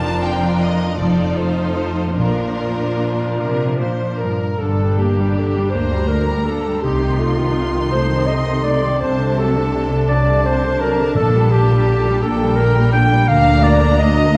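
A dark, reverberant scoring-stage sound frames this brief excerpt from a slow, tender romantic orchestral movement in 6/8, moving with a rubato pulse of roughly 48-57 dotted-quarter beats per minute. It opens in Bb major and turns to G minor at 4.6 seconds. Close, focused violins carry the melody with vibrato while a more distant violin section sings a second line beneath, supported by smooth, even violas and cellos and a lush bowed double bass section anchoring the bass. A concert harp rings out arpeggios in the background, and a warm clarinet joins the second line at 3.4 seconds with a classical, smooth-topped tone. A very quiet timpani note on Bb sounds briefly at 11.2 seconds, adding a soft touch of weight near the close.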